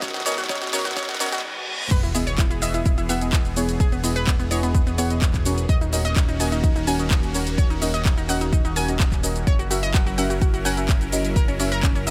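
Bittersweet and expansive, this progressive house passage rises from a brief build-up with a drum fill, a very quiet riser, reverse cymbal and sub drop into a drop at 1.9 s, where a fat, saturated analog bass joins the punchy up-front kick, a house kit of cracking snare, handclaps, shaker, bright hats and crash, lush phased supersaw pad chords, warbling vintage pluck arpeggios with dub echo, and deep, mellow chorused chord stabs, with the bass, pad, pluck and stabs pumping against the kick over G#m7, Emaj7, D#m7 and F#7.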